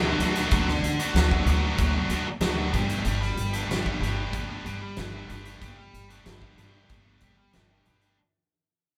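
Bittersweet and restless, this short cut from a longer quiet-loud alternative rock piece moves at 94 BPM in a straight 4/4, tuned slightly sharp to A4 = 445 Hz. A bright, high-gain distorted electric guitar carries the riff up front, picked and double-tracked, sitting between D3 and G4. Beneath it, an upright bass plays pizzicato on steel strings, its woody, dark tone holding down the low end from G1 to D2. The huge arena drum kit enters at 0.2 seconds, an acoustic, natural-sounding set with a fat snare, punchy kick and hi-hat in a big room. The harmony moves from D to Gsus2 at 2.7 seconds, and the whole passage fades out across its 8.2 seconds. Captured as a band playing live in one room, the recording carries light reverb.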